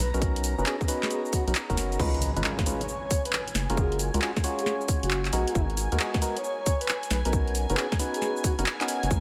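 Soulful and late-night, this short cut from a longer UK garage track rides a swung two-step groove in 4/4. A tight, layered electronic kick and a punchy, tape-tinged analog drum machine sit up front, the latter bringing snare, handclaps, hi-hat, cabasa and crash cymbal. Alongside them a rubbery, hollow square bass bounces with a resonant filter pluck, while percussive organ stabs, nasal yet mellow and treated with chorus and delay, punctuate the chords. Further back, a breathy flute-like synth lead carries the melody through tremolo, lush chorus and delay, and a silky, warbling string machine holds sustained chords that pump with sidechain. At 2.0 seconds the drop arrives with a distant impact that lasts until 3.8 seconds, as the harmony moves through Bmaj7, C#7, F#maj7 and G#m7, all bathed in a dreamy, reverb-soaked church-like space.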